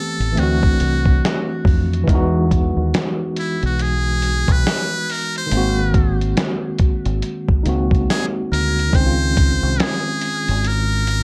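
A buzzy, close-miked trumpet with a metal mute carries the melody through analog delay, its scooped notes and light vibrato leading this reflective, melancholic lo-fi hip hop excerpt, over a worn, slightly out-of-tune tine electric piano with light overdrive, a dark, round fingered dub bass, and a dusty soul sampler-style kit with gritty 12-bit crunch and a thumpy kick, all swinging loosely on the 16ths under light reverb and cassette tape.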